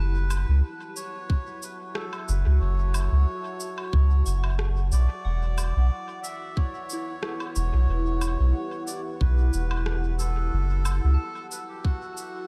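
Ambient dub cut from a longer piece, meditative and deep, where a reedy, breathy melodica carries the melody through dub echo over a dark, detuned sawtooth pad with chorus, reverb and vintage 12-bit sampler grit moving between F#m7 and Em9, while a soft FM synth bell plays arpeggios in the background through chorus, phaser and tape echo, a round sub bass sits up front until 11.2 s, and overdriven electronic cabasa, woodblock and rim click with dub echo enter at 0.3 s, ahead of a tight, tape-warm kick that arrives at 1.3 s, the whole mix set in a light reverb.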